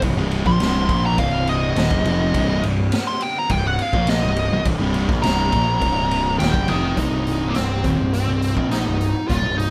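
A live-in-one-room sound with moderate studio reverb frames this ominous, brooding stoner and doom metal excerpt in C minor, moving at 104 BPM in a straight 4/4 over a C minor chord. Two fuzz guitars sit in the background with picked, distorted riffs, over a round, punchy overdriven fuzz bass and a distant, roomy garage drum kit with a boomy kick, high-tuned snare, hi-hat and ride. A dark, up-front fuzz lead guitar with wah enters at 0.5 seconds for a solo, while a very quiet, swirling vintage string machine with phaser holds sustained chords until 6.9 seconds, just before the music moves into a new section at 7.0 seconds.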